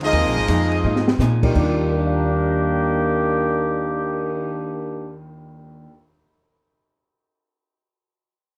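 Big band swing jazz, joyful and energetic, in a short cut from a longer piece with a swung 4/4 feel and light reverb. A clear, up-front trumpet section with light vibrato carries the melody until 1.2 seconds, capped by a drum fill. A mellow, vintage trombone section holds a second line until 5.2 seconds over a woody, thumpy pizzicato upright bass and an open jazz kit with dark cymbals, a high-tuned snare and a punchy kick, while a very quiet natural grand piano and a clean, compressed hollow-body archtop guitar fill in the accompaniment as the harmony moves from Bb7sus4 to Ebmaj9 at 1.6 seconds.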